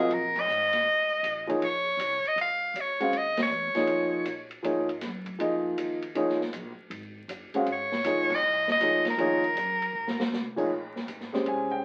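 An edgy, forceful soprano saxophone leads this brief, spiritual and cool modal jazz excerpt with a swung feel, its punchy, vibrato-laden solo sitting up front before pausing at 4.5 seconds and returning at 7.7 seconds. An intimate concert grand piano with audible action noise and deep bass accompanies throughout, while a woody, dark pizzicato upright bass stays in the background and an open acoustic drum kit with dark cymbals and a boomy kick adds band accents and a fill from 9.9 to 10.3 seconds. A wet club reverb and the crackle of a very old 78 rpm record give the sound its aged character as the suspended harmonies shift to a minor chord near the end.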